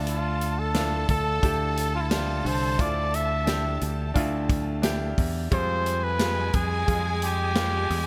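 Piano-driven pop with an anthemic, hopeful mood, this short excerpt from a longer piece moves at 88 BPM in a straight 4/4. A close-miked flugelhorn carries the melody up front with a clear pop-style tone and light vibrato, its line touched by digital delay. Underneath, a concert grand piano supplies the accompaniment with an intimate, polished sound, audible action noise and short sustain, while a bright, punchy fingered electric bass holds the low end. A natural country drum kit of hi-hat, punchy kick and medium-tuned snare sits up front, dressed in gated reverb, and a lush, distant violin section adds an expressive bowed second line. The harmony rests on Dmadd9 before shifting to Fmadd9 at 5.5 seconds, all set in a small room with light reverb and a bright 1980s-style digital production.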